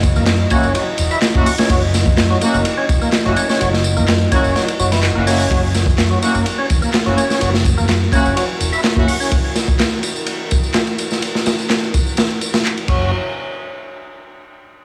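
Breakbeat with a funky, energetic drive, this excerpt opens on a crunchy, saturated breakbeat kit with a tight kick and dark cymbals, electronic tambourine and handclaps, and a round, amped fingered electric bass; an overdriven tonewheel organ with key click plays a riff, a clear brass section adds tight stabs through digital delay, and a moody, detuned analog pad pumps beneath with vintage 12-bit sampler grit, while the kick drops out at 4.6 seconds ahead of a band accent at 5.0 seconds in a small, lightly reverberant room.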